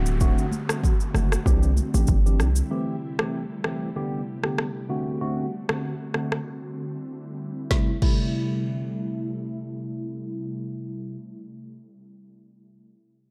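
Hypnotic and smooth, this afrobeats excerpt with a light 16th-note swing sets a clean, up-front tine electric piano through a combo amp, colored by phaser and a low-pass filter, over an ethereal, airy pad with ensemble chorus, built-in reverb and sidechain pumping, while a punchy, heavy 808-style bass and a background downlifter end by 2.7 seconds, soft-handed congas add a damped touch, and an electronic afro-pop kit with deep kick, woody snare, rim click, shaker and crash drives the groove through a break at 6.5 seconds before dropping out at 8.2 seconds.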